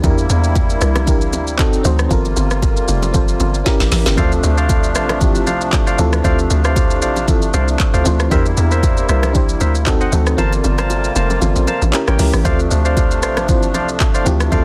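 A deep, hypnotic amapiano groove at 116 BPM in D minor opens with everything but the stabs together: a bouncy log drum bass with a quick, decaying attack, an up-front electronic afro-pop kit, congas and bongos, an FM electric piano and an accordion. The kit pairs a deep kick and woody snare with metallic hats, handclaps, rim clicks and shaker over a lightly swung 16th-note feel. Hard-handed, close congas and bongos sit in the background, while the tremolo-laden electric piano adds mellow chords and the reedy, sweet accordion holds dark, smooth sustained harmony with a light tremolo tuning. After a short drum fill, a percussive organ stab with a sine-and-triangle, hollow tone, treated with chorus and delay, enters at 4.2 seconds. The harmony cycles through rich, tense chords such as C7/E, D7b9, Gm11 and A7b9 before settling on Dm7, and the kick drops out briefly from 10.4 to 12.5 seconds. 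The dry, dense, heavily limited modern master rounds out this excerpt.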